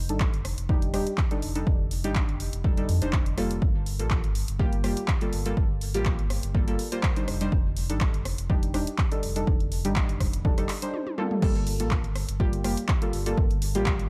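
Warm and deep, this short deep house cut sets mellow, detuned chord stabs treated with chorus, delay and sidechain pumping over a pumping sine-and-triangle sub bass doubled at the octave, while a punchy electronic kick and a layered kit of handclaps, hi-hat, rim click, crash and toms, both overdriven and touched with studio reverb, drive a lightly swung groove through F13 and Gm9 chords, with a drum fill at 10.9 seconds tipping into a drop at 11.4 seconds.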